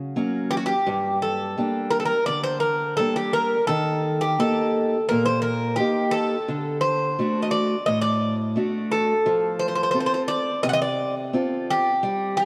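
A Greek bouzouki leads this brooding Greek folk piece, its picked double strings ringing with a metallic edge and some octave-doubled strings as it carries the melody between F#4 and F#5. Beneath it, a picked acoustic archtop guitar supplies a warm accompaniment, with the occasional finger squeak audible across its range from G2 to A4. Both instruments sit up front and play throughout the 12.4-second section, which is cut from a longer piece. The tempo is a moderate 86 BPM in a straight 4/4, with the harmony moving through F#, Gm, Eb, D and F. A long, wet plate reverb surrounds the band and gives the recording a cool sense of distance, as if it were heard from further back in the room.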